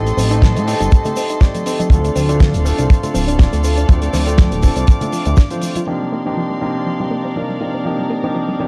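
A dark, small-room nu-disco excerpt at 121 BPM with a sensual, lightly swung groove, where a gritty, pumping grand piano and reedy, gut-toned strings hold Am7b5, Dm7 and Cm11 chords over a saturated sawtooth bass and a tight, up-front kick that both drop out near 5.5 seconds, while a nasal, chorused pluck arpeggio gets a filter sweep from 5.9 seconds above a damped 70s kit with a fat snare and background congas.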